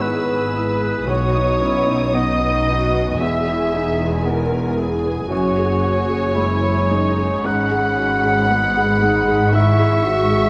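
This cut from a longer film score opens with muted strings, a felt-muted upright piano and a solo oboe all sounding together at a slow, rubato 57 BPM, the mood longing and bittersweet. A veiled, con sordino violin section carries the high melody above a second violin line that the smooth-topped oboe shares, while the intimate piano, its action noise audible, shares the accompaniment with dark violas over distant cellos and double basses. The harmony moves from E/G# through Badd9, E, F#sus2 and G#m7 to C#m/G#, and a wet scoring-stage reverb with a 1.7-second decay surrounds the ensemble.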